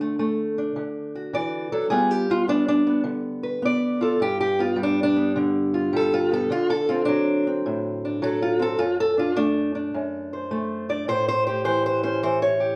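Heard in a large studio with a generous, wet reverb and the feel of a live room, this gritty, laid-back slice of acoustic country blues moves at 105 BPM in 4/4 with swung eighths, in D mixolydian. A fingerpicked steel-string acoustic guitar with a dark, boxy parlour tone sits up front and plays solo for the full 12.8 seconds, ranging from F#2 to D5. It moves from D to G7 at 1.9 seconds, then through D7 to A7 at 11.1 seconds before the cut from the longer piece.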